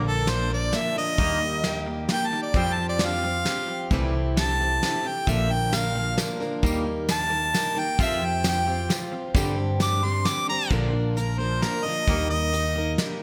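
Folk rock with a heartland rock lean, this short cut from a longer piece moves in a straight three-four and carries a nostalgic, jangly mood. An up-front, clear harmonica takes the melody as a solo with delay through the first 10.7 seconds, over a bright plugged-in steel-string acoustic guitar picked with audible finger squeak. A twangy electric guitar plays a clean riff with subtle chorus in the background, while a pizzicato upright bass with a woody tone anchors the low end. A soft brush drum kit with a fat snare and tight kick sits in gated reverb, a jingly tambourine joins at 5.3 seconds, and a reedy, breathing pedal harmonium holds very quiet sustained chords. The mix has a glossy 1980s-style digital sheen, with plate reverb and a small room around it.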